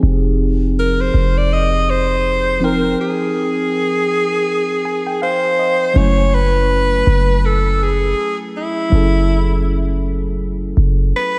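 Soaked in lush hall reverb, this dreamy, sensual contemporary R&B excerpt moves at 81 BPM with a light 16th-note swing, as a boomy, deep 808-style bass and a soft, round FM electric piano with chorus sit under Fm7 before the harmony shifts to F#m9 at 6.0 seconds, the piano adding a fill from 4.5 seconds, while a close-miked, up-front alto saxophone with vibrato, subtone and tape echo carries a moody jazz-style solo melody from 0.8 seconds.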